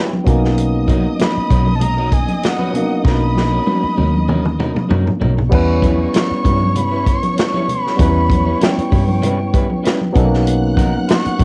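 A breathy, close-miked jazz flute with a chiffy attack, warm vibrato and an unsteady tone carries the melody over a barky tine electric piano, a slightly broken-up guitar riff through a small old amp, and soft-handed congas ringing in the background, in this lush, smooth 1970s-style soul excerpt at 97 BPM with a light sixteenth-note swing. A dark, foam-muted fingered bass and an up-front vintage drum kit with a punchy kick and rolled-off top join at 0.3 seconds, along with a distant string section bowing a second line with portamento. The harmony moves from Bmaj9 to Em6 at 5.5 seconds after a drum fill, and the whole piece sits on light reverb with the soft haze of a home cassette recording.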